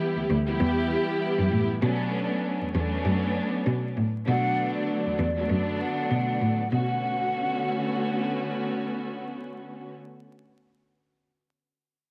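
Vinyl crackle and a light studio reverb frame this moody, dark boom-bap hip-hop passage in B minor, cut from a longer piece and moving at 98 BPM with a swung 16th-note feel, as the chords shift from Em to Bm7 at 1.8 seconds. A close, intimate bowed string section plays soft-attack sul tasto accompaniment with vibrato and a smooth top, colored by cassette tape and filtering, while a clear, focused solo cello bows the bass line up front. At 4.3 seconds a breathy, hollow concert flute takes the melody with tongued notes and vibrato, filtered and trailed by digital delay, until 8.5 seconds.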